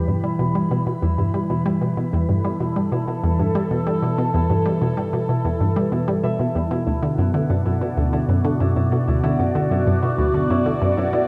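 Ambient, sequencer-driven space music at 95 BPM in E minor, hypnotic and expansive, where a juicy, squelchy resonant blip pluck with chorus and analog delay drives a low riff up front, a swirling, nasal phased analog pad with phaser and chorus holds sustained chords from Em to Bm at 6.7 seconds, and a ringing, thumb-plucked concert harp fades in with arpeggios echoed by analog delay, all wrapped in a moderate plate reverb within a dark, warm production.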